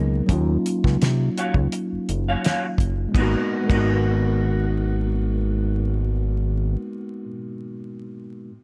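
Late-night and smooth, this short neo-soul and R&B fragment moves at 84 BPM in G# dorian with a lightly swung 16th feel, shifting from D#m9 to G#m9 at 3.1 seconds. A mellow tine electric piano and a thick, saturated analog bass with a filter sweep sit up front, while a damped 70s drum kit with dark cymbals, a fat snare and a tight kick plays only until 3.9 seconds. From 1.4 seconds an electric guitar through a small old amp adds a slightly broken-up, picked second line with ensemble chorus, heard in a small room with light reverb and vinyl crackle.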